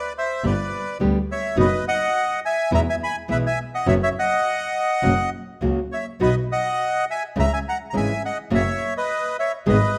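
A reedy, up-front bandoneon opens this nostalgic, elegant tango fragment with the melody, joined at 0.4 seconds by a fingerpicked classical nylon-string guitar in accompaniment and a rich, smooth, even bowed double bass with vibrato, all moving with a rubato feel through a moderate recital hall reverb.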